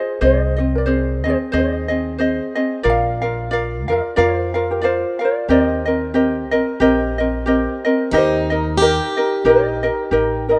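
A lightly swung eighth-note feel at 91 BPM in 4/4 carries this sunny, languid Hawaiian excerpt in E-flat major, where a mellow, thumb-plucked ukulele melody rides over a second, fingerpicked ukulele accompaniment placed up front, with a woody, dark pizzicato upright bass joining at 0.2 s. At 8.1 s, as the harmony settles on Eb, a boxy, picked plugged-in swing-style acoustic guitar enters up front with a second line. Light reverb and a small-room ambience give it the rough sound of a home demo.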